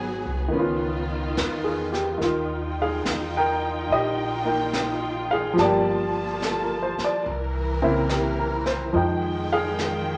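Smoky and intimate, this swung jazz ballad at 71 BPM sets a clear, up-front baby grand piano with short sustain against a lush, distant bowed string section full of vibrato and portamento, a woody, dark pizzicato upright bass, and a brushed drum kit that enters at 0.5 s, all moving through rich chords from Abm7 and Db9 to Gm9, C7b9 and Fm9 in a large studio reverb.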